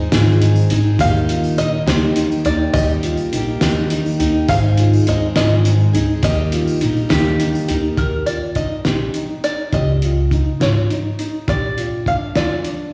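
Hopeful indie folk in a straight 6/8, captured as a live gig through the venue's PA with a light recital-hall reverb, where a twangy, plunky fingerpicked banjo carries the melody over a mellow, boxy upright piano playing arpeggios, both of those parts, along with an up-front picked acoustic guitar with audible finger squeak, carrying a slapback echo. A woody, thumpy pizzicato upright bass anchors the low end while a cloth-damped, muffled drum kit with a fat snare, tight kick and hi-hat adds gritty lo-fi weight, and a jingly tambourine sits distant in the background. The guitar drops out at 8.0 seconds and the tambourine just before, at 7.7 seconds, as the music moves into a new section in this building arrangement cut from a longer piece.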